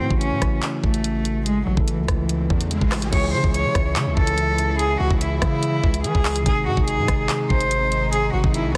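A half-time drill groove of knocking kick, hi-hat, handclaps, rim clicks and crash drives this dark, tense hip hop excerpt, where an intimate, airy sul tasto cello sings the melody through tape echo over a mellow tine electric piano and a heavy, saturated 808-style bass, a background riser builds from 2.1 to 3.1 seconds, and a lush, smooth studio string section enters at 3.1 seconds with sustained chords beneath a dense, heavily limited mix.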